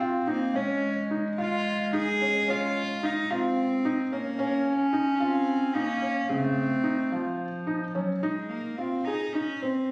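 Hypnotic and pensive, this contemporary chamber excerpt moves in 7/8 at 218 BPM counted in eighths, with a rich, reedy gut-string cello carrying the bowed melody from 0.3 seconds over soft arpeggios from a felt-muted upright piano with intimate, audible action noise, while a mellow, soft-attack clarinet adds a roomy second line until 8.2 seconds, when the harmony moves from Dbmaj7 to Fm7, all captured by a phone in a recital hall with moderate reverb.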